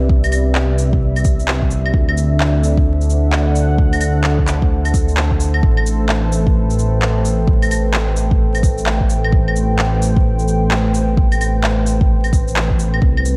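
A swung 4/4 groove at 130 BPM drives this rainy, ghostly future garage excerpt in A minor, with a deep electronic kick entering at 0.1 seconds and a shaker, claves and handclaps filling in just after, both carrying the sound of a large room. Underneath, a detuned sawtooth bass sits up front, rumbling and beating in its low register while it pumps against the sidechain. A dark analog pad holds sustained chords with a slow attack and long release, its mellow, moody tone thickened by chorus and a sub octave and likewise pumping from sidechain compression. The harmony moves from Cmaj7 to D7 before settling on Am7 at 5.6 seconds. Light reverb and a layer of vinyl crackle give the whole piece a hazy atmosphere.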